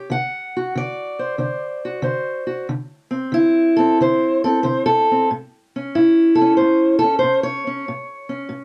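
A dark, warm recording with light reverb carries a swaggering, rollicking slice of acoustic country blues at 93 BPM in a swung 4/4, where a single up-front, boxy fingerpicked steel-string parlour guitar ranges from A2 to F#5 over a D7 chord that moves to A at 5.3 seconds.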